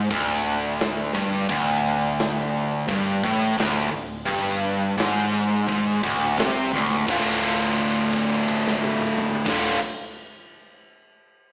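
Gritty and heavy, this short cut from a longer blues rock power trio and southern rock piece in D minor moves at 86 BPM in a straight 4/4, with an up-front, double-tracked, overdriven electric guitar riff carrying a slapback echo over a round, foam-muted fingered bass sitting in the background and a big acoustic rock kit with bright cymbals and a punchy kick, as a drum fill at 6.7 seconds leads into a held note at 7.1 seconds, all heard as a live club gig through the venue's PA with light reverb and a small-speaker sound.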